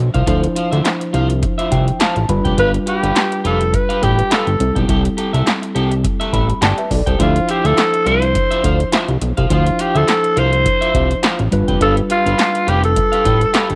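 A swung sixteenth-note groove at 104 BPM in 4/4 drives this danceable, funky slice of early-eighties boogie funk in D dorian, cut from a longer piece. A dry electro drum machine sits up front with a deep kick, punchy snare, metallic hi-hats and handclaps, while a fat, saturated analog bass with a filter sweep anchors the low end. A mellow tine electric piano carries the chords from Dm9 through G7 and C6, stepping out with short fills at 1.4 and 6.0 seconds, and a dark, slightly broken-up electric guitar picks a riff through analog chorus. At 2.6 seconds a growling alto saxophone takes the melody, raspy and breathy with vibrato and a slapback echo, standing level with the bass at the front of the mix. A digital ambience surrounds the whole track.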